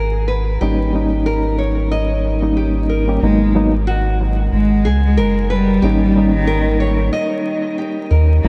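Soaked in a huge ambient reverb with vinyl crackle beneath it, the mix has a dreamy sound. This short trip hop passage, cut from a longer piece, holds a brooding, hypnotic mood over a lightly swung 4/4 feel. From the start, a small, fingerpicked nylon-string guitar plays arpeggios coloured by vintage 12-bit sampler grit and tape echo, while a soft, round dub sub bass sits deep and up front. At 0.6 seconds a reedy, clean electric piano enters with tremolo-laced accompaniment heard through built-in speakers, carrying its own sampler grit and tape echo. At 3.2 seconds a distant, woody cello takes the melody, a single bowed player with vibrato trailed by dub echo, as the harmony moves from a minor ninth chord to a dominant seventh.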